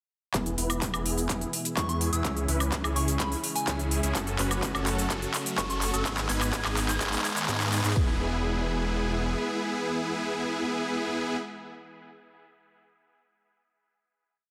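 Triumphant and uplifting, this short festival progressive house piece is one continuous build from 0.3 seconds, driven by a punchy four-on-the-floor electronic kick and a crisp, tape-tinged dance kit of claps, hats, shaker and woodblock, while huge, bright supersaw chords play a dotted-rhythm riff through a filter sweep and dub echo. Beneath them a thick, saturated detuned saw bass follows the chord rhythm and a lush, warbling unison pad sustains in the background, both pumping with sidechain, as a very quiet riser climbs and a soft, pure FM bell adds short answering phrases high above. The drums drop out at 8.0 seconds, and the supersaws and pad, joined briefly by the bass, ring out on a final chord in a moderate digital reverb, all in a dense, heavily limited modern master.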